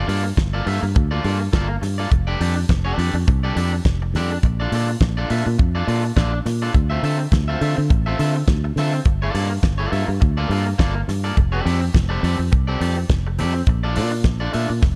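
A bright, twangy electric guitar at the edge of break-up, its warbly pitch drift coloring the chords, opens alongside a round, foam-muted fingered bass and a dry 70s kit with a fat snare and tight kick, all carrying this joyful, danceable disco cut in F major at 104 BPM with a lightly swung 16th feel through Gm9, F69, Bbmaj7 and Dm9 in a small, dark-sounding room.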